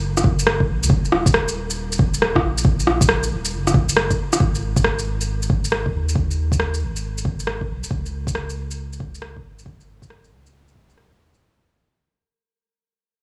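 Future garage at 137 BPM in 4/4, with a 66% sixteenth-note swing that gives this short cut from a longer piece a melancholic, ghostly mood. A deep, round sine sub bass with a fast attack and sustained tone runs throughout, ranging from D#1 to E2 and pumping under sidechain compression. An overdriven electronic kick drum, deep and layered, re-recorded in a small room, enters at 0.2 seconds alongside a layered rim click and shaker that sits up front with the same gritty overdrive and small-room character. The mix carries light reverb and studio ambience, lending a faint haze around the parts. After an opening section, the music moves into a second section at 4.4 seconds and fades out from there to the end at 11.4 seconds.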